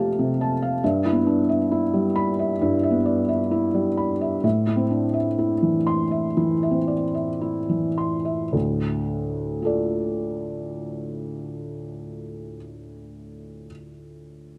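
A felt-muted upright piano plays solo, up front and intimate, its mellow, muted tone carrying audible action noise, in this reflective, wistful neoclassical minimalist fragment in D dorian at a rubato 52-69 BPM in 4/4, tuned to A4 = 438 Hz, easing its pace through the first 8.5 seconds as the harmony moves from Fadd9 and Em/G to Am before arriving on Dm, captured dry outdoors with little reverb.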